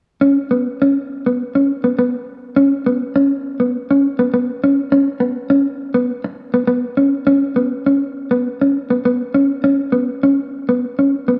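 Warm and sunny, this short fragment of a highlife piece moves in a straight 4/4 feel. A single mellow electric guitar carries the whole passage on its own from 0.2 to 11.4 seconds, its lines staying within a narrow band between B3 and C#4. The guitar's tone is dark and clean, with a fingered touch, and it sits up front in the mix. A spring reverb colors the guitar, while a moderate studio reverb gives the sense of a band playing live together in one room. Lifted from a longer performance, the moment feels like an intimate glimpse of a larger, sun-lit groove.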